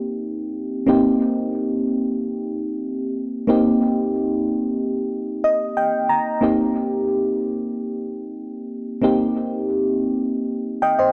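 A lush hall reverb with a 1.8-second tail surrounds this short pop excerpt, giving it a glossy, romantic sheen. The only part is a mellow FM electric piano playing alone from 0.0 to 11.1 seconds, placed up front and ranging from Bb3 to Bb5. Its tone is soft, round and dark, with a fast attack that decays and a noise layer beneath each note. Chorus, phaser and tape echo color the piano throughout. The music sits at 92 BPM in a straight 4/4 in Eb major, opening on an Eb6 chord, and the piano adds a brief fill between 5.1 and 6.4 seconds.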